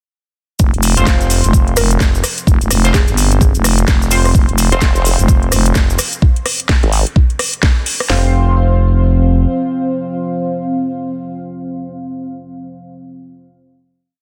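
This is a short, complete bass house piece at 128 BPM in 4/4, with a bouncy, gritty swing on the sixteenths. A drop opens at 0.6 seconds. A thick, growling FM bass plays chopped phrases up front, and a layered electronic garage kit drives a four-on-the-floor kick with knocking punch, cracking snare and metallic open hats. A second, tape-warmed kit adds programmed closed hats, rim clicks and a backbeat snare, both kits sitting in studio reverb, while a grainy, close cabasa ticks out hand-played sixteenths in the background. Sparse, nasal band-passed sawtooth stabs echo through phaser, lush chorus and digital delay, moving one chord shape in parallel. A woody, round mallet-like pluck offers brief phrases early on, and a compressed sawtooth wobble bass with a formant filter enters at 4.7 seconds, its wobble speed changing. Beneath it all, a deep, moody pad of detuned saws with a sub octave fades in slowly, pumping against the kick, and carries the final chord from 8.1 seconds to the close of a dense, heavily limited modern master.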